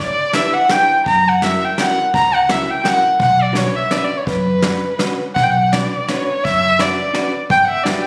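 A dark, nasal solo violin opens this brief cut from a whirling, bittersweet musette waltz, its bowed melody sitting up front with expressive vibrato and portamento and a slight boxy edge, played in a loose swing with rubato. Almost at once a clean, compressed hollow-body electric guitar adds picked accompaniment and a soft brush kit brings a punchy kick and medium-tuned snare, while a woody, thumpy pizzicato upright bass joins at 1.1 seconds as the harmony moves from Em7 through F#7 to Bmadd9 and finally Gmaj7. The phone capture of the room gives the ensemble the lingering glow of a recital hall, with the violin riding clearly above the others.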